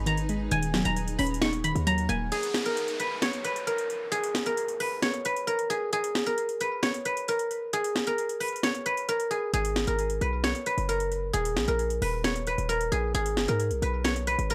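A fingerpicked guzheng with tape echo rings out a silvery melody over a dark, chorused pluck, a blurred granular pad in the background and a punchy 808-style bass, opening this melancholic, menacing half-time trap excerpt in G# minor at 133 BPM. An overdriven electronic kit with a sharp snare, metallic hats and finger snaps enters almost at once. At 2.3 seconds the pluck, pad and bass drop away and the kick falls silent, leaving the guzheng and drums over a brief downlifter, before the heavy bass returns at 9.5 seconds in this dry, gritty hardware recording.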